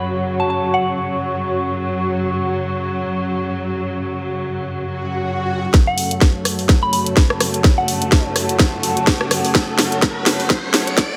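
A lush hall reverb with a digital sheen wraps this bouncy, aggressive bass house fragment, cut from a longer track in F# minor at 126 BPM with a 16th-note swing. From the start, a rich, bowed studio string section holds smooth, vibrato-laden chords low in the register, pumping under sidechain and darkened by a low-pass filter. A warbling, lo-fi pad sits higher, its detuned, wave-folded tones nostalgic and hazy with chorus. A soft FM bell adds brief, pure melodic figures, with chorus, phaser and digital delay trailing each decaying note. A background swell arrives at 4.9 seconds, and at 5.7 seconds the harmony settles on F# minor as a tight, up-front electronic kick and a garage kit of cracking snare, rim click and warm hats drive a build-up with a drum fill, a riser and a filter sweep on the strings.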